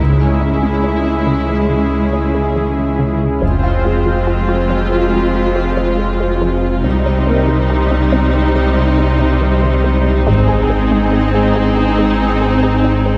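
A cinematic hybrid of orchestral and electronic film scoring in F minor at 70 BPM, this brooding, futuristic excerpt moves through Dbm, Fm, Cm and Ab over 13.2 seconds. Up front, a lush bowed viola section with vibrato carries the accompaniment beside a soft-attack sawtooth pad thickened by chorus, while a deep, clean sine sub bass anchors the low end with a focused cello section and a distant double bass section that drops out at 11.1 seconds. A very quiet, squelchy, nasal filter pluck with phaser traces arpeggios, and a faint, boxy grand piano with audible action noise adds texture, all set back in the room within a 2.1-second scoring-stage reverb.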